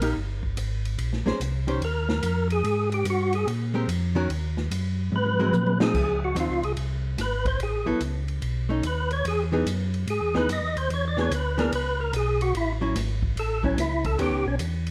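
A soul jazz organ trio swings at 145 BPM in 4/4 with a bluesy feel, in a short passage cut from a longer piece. A percussive tonewheel organ carries the melody as a solo across the whole 14.9 seconds, its fat, lightly overdriven tone marked by third-harmonic percussion, key click, chorus vibrato and a slow rotary speaker, set in plate reverb. Beneath it, a second, mellow tonewheel organ supplies a round, clean bass line through its own slow rotary speaker, while a clean, picked archtop guitar adds compressed hollow-body comping up front. The open jazz drum kit sounds acoustic and small-roomed, with dark cymbals, a medium-tuned snare and a boomy kick, and it plays a fill from 5.1 to 5.9 seconds that leads into the second statement of the phrase. The harmony moves restlessly through extended chords such as Bbm9, Dbmaj9 and B9 before settling toward Eb7b13, and the whole trio sits in a moderate large-studio reverb.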